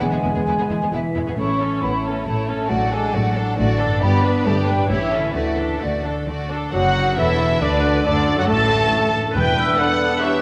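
Set in a wet scoring-stage reverb, this fast, dramatic romantic orchestral movement in 3/4 at 136 BPM moves with a lively, cheerful rubato, settling into D major from 4.0 s. A dark violin section carries the melody with portamento and expressive vibrato, while a pure, distant flute ensemble and a focused second violin section add supporting lines over a background of smooth violas, mellow French horns holding chords, ringing fingerpicked harp arpeggios, and a cello and double bass section laying down a rich, even bass. At 6.7 s a quiet clarinet, a cor anglais and a vintage-toned bassoon join, and soft-mallet timpani add a round touch at 9.3 s.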